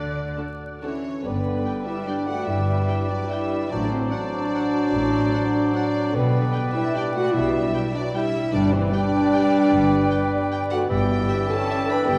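Cut from a longer piece, this elegant, sweeping orchestral ballroom waltz opens with a distant, lush violin section singing the melody with portamento over an airy silver flute, a mellow clarinet, a roomy oboe, ringing thumb-plucked harp arpeggios and a smooth cello and double bass foundation, before a second violin line and a dark, intimate viola accompaniment join at 0.4 s, French horns add tight, soft-edged sustained chords at 0.8 s and a faraway bassoon enters at 1.2 s, the ensemble swaying with rubato inside a wet concert hall reverb touched by vinyl crackle.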